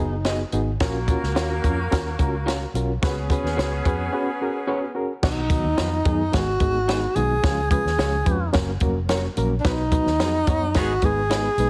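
Passionate and urgent, this uptempo 1960s-style soul excerpt moves at 109 BPM in a straight 4/4, cut from a longer piece and set in G# dorian. A reedy electric piano with fast tremolo and a round, foam-muted fingered electric bass carry the harmony throughout, while a compact cocktail drum kit with a punchy kick, high-tuned snare and dark cymbals sits up front. A warm horn section with vibrato and slapback echo plays a second line from 0.8 seconds, and an electric guitar through a small old amp adds slightly broken-up, picked stabs in the background. After a break at 4.1 seconds, the breathy tenor saxophone returns at 5.2 seconds for the melody, close-miked and intimate with a whispered subtone, soft attacks and scooped notes, as the chords move through B, G#m, C# and F#. The whole mix has a heavily compressed radio sound with light small-room reverb.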